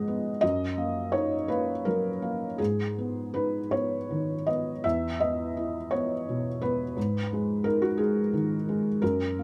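A close, dry and detailed sound puts a soft, mellow felt-muted upright piano up front, its action noise audible, as it plays alone in an intimate, wistful neoclassical minimalist fragment in a rubato 6/8, stating the same phrase twice over about 9.4 seconds, with chords moving from D#m/F# to G#m, then E5 at 4.8 seconds and back to G#m.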